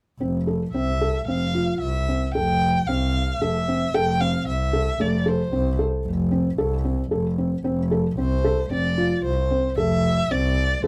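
A felt-muted upright piano and a bowed double bass begin together at 0.2 seconds, the piano rolling soft arpeggios with a boxy, dark tone, short sustain and the audible clatter of its action, while the bass holds a low foundation in a nasal, airy sul tasto voice with light vibrato. This is contemporary instrumental chamber music in an uneven 7/4 metre at 113 BPM, hopeful and shimmering in mood, resting on an Fmaj7 harmony in F major. At 0.7 seconds a single violin enters with the melody, singing expressively with vibrato and portamento in a warm, up-front tone. The three instruments continue together to the close of this fragment at 10.9 seconds, cut from a longer piece. The close, detailed miking and near-dry room give the trio an intimate, in-the-room presence.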